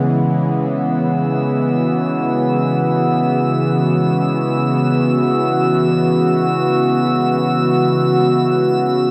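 Reflective and melancholic, this ambient fragment drifts in free time over a single C#m7 chord in C# minor, tuned to A4 = 438 Hz. A smooth, warbling vintage analog pad with chorus sits up front holding sustained chords, while a very quiet, nasal, string-like drone with vibrato and its own reverb hums low beneath it. From 1.1 s a calm, glassy texture of drifting overtones with chorus floats high above, inside a lush hall reverb and a dark, warm production.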